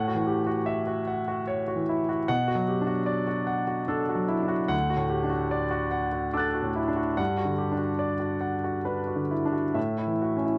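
A clear concert grand piano plays alone, wistful and intimate, in this neoclassical minimalist piece in B minor, moving rubato in 3/4 at around 74 BPM through chords from F#m7/A to Bm7, D and Gmaj7, its up-front, polished tone carrying deep bass, long sustain and audible action noise within light reverb and a dark production, in a brief excerpt cut from a longer work.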